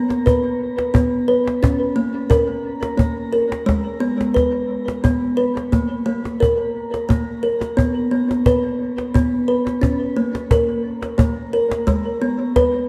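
A plucked kalimba opens the recording at 0.0 seconds, spinning gentle, hypnotic arpeggios between Ab3 and Cb5 in an unhurried 3/4 at 88 BPM. Its short, airy notes carry a solid-board body and sit up front, trailed by a diffuse ambient delay and a shimmering reverb that lend the meditative tuned-percussion piece a floating, world-music calm. A cajon joins almost at once, at 0.1 seconds, with a close, acoustic, woody tone and faint snares, kept a little lower than the kalimba but still near the listener. The straight feel stays steady throughout this single passage, which is cut from a longer piece. A wet echo-chamber reverb, blended with the sense of a small room, wraps the pair in a soft, enveloping space until the cajon stops at 12.7 seconds and the kalimba at 12.9 seconds.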